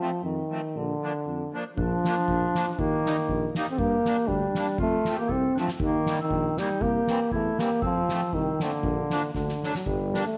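The recording sits in a small room with a moderate echo-chamber reverb, giving this short excerpt of alpine folk dance music a cosy, lively sound. A close-miked euphonium carries the melody up front in a classical style, over a reedy, sweet accordion with a light tremolo tuning and a roomy, distant tuba on the bass line. From 1.8 seconds a mellow clarinet adds a second line in the background, and a soft-mallet drum kit enters with a fat snare and a boomy kick, playing a short fill near 5.6 seconds and another toward the close. The jolly, bouncy tune moves in 2/4 at 118 BPM with a light swing, in B-flat major. Its harmony travels through E-flat, G minor, F and C7 before returning home and then turning toward G minor at 9.9 seconds.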